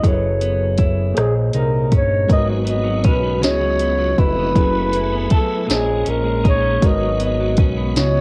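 Faint mains hum and light reverb frame this homemade cassette snippet of slow, yearning late-night R&B in G# minor at 53 BPM in 6/8, where a dark, breathy flugelhorn with scooped notes carries the melody up front over a picked clean electric guitar line, a worn, slightly out-of-tune tine electric piano, a fat sawtooth analog bass and a soft-kicked, sharp-snared drum kit, until a piping, lightly overdriven tonewheel organ with key click and fast rotary speaker joins at 2.3 seconds with sustained chords.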